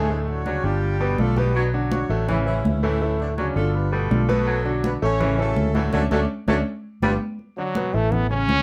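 A brilliant, forceful trombone bursts in up front at 7.6 seconds for a short solo, capping a sunny, danceable salsa passage where a dark, roomy horn section with octave doubling carries the melody over a clear baritone saxophone line, an intimate grand piano with audible action noise, a round, foam-muted electric bass and thin-skinned congas, all in light reverb.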